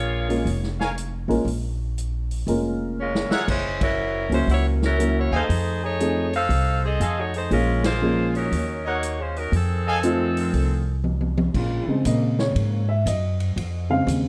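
A tight, vintage-toned saxophone section carries the melody over thumpy, woody pizzicato upright bass in this dramatic, swinging big band excerpt at 119 BPM in Bb minor, joined almost at once by a warm upright piano and a big-room drum kit with dark cymbals and a punchy kick, while a distant, roomy trumpet section adds bright stabs and the band hits accents until a drum fill hands off at 11.5 seconds to a piano solo over smooth-topped sustained trombone chords, all in light reverb.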